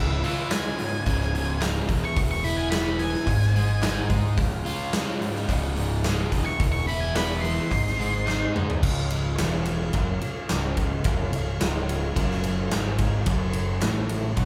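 A dark, fuzz-drenched octave-fuzz lead guitar solos on the melody for the first 8.5 seconds of this sunny, driving classic rock excerpt at 108 BPM in Db major, over an up-front, double-tracked overdriven semi-hollow guitar riff, a growling, bright, overdriven fingered electric bass, a big, natural-sounding rock drum kit with bright cymbals and a tight kick that plays a fill just before the new section at 8.8 seconds, a very quiet, smooth tonewheel organ with key click and slow rotary, and crisp, very quiet group handclaps, the band playing together in a large live studio room.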